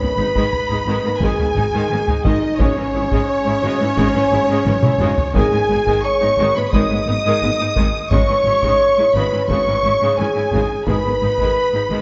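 A mellow French horn section sits up front with sustained chords in this dramatic, epic cinematic orchestral passage, while a lush bowed violin section sings the melody in the background alongside an expressive second violin line, intense violas, focused cellos, and double basses holding the bass, and close, dry taiko drums struck with heavy sticks break into a fill at 4.7 seconds, inside a moderate concert hall reverb.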